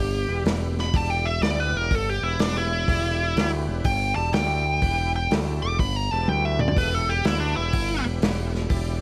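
Recorded with light reverb and small-room ambience, this gritty, smoky cut from a longer blues rock and southern rock power-trio piece swings at 124 BPM in E minor over a single Em chord: a dark, nasal lead guitar with a parked wah, overdrive and tape echo solos up front from the start, with a growling, overdriven picked bass beside it, a thick tonewheel organ with chorus vibrato, key click and percussion holding sustained chords in the background from 0.3 seconds, and a muffled, lo-fi vintage kit with a tight kick entering at 0.5 seconds and dropping in a drum fill at 6.3 seconds.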